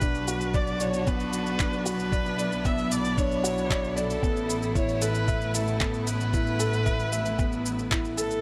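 Piano and strings electronica at 114 BPM with a hopeful, tender mood, this short cut moves from Bm to Asus2 as a soft, felt-muted upright piano plays an intimate riff with audible action noise, a distant, vibrato-rich solo viola sings the melody through tape echo, a lush bowed string section holds sustained chords and a smooth double bass section carries the bass, both breathing with sidechain pumping, while a muffled, thumpy pitched-down kick (stopping at 8.0 seconds) and layered, tape-warm electronic shaker and handclaps sit in small room ambience under a light reverb.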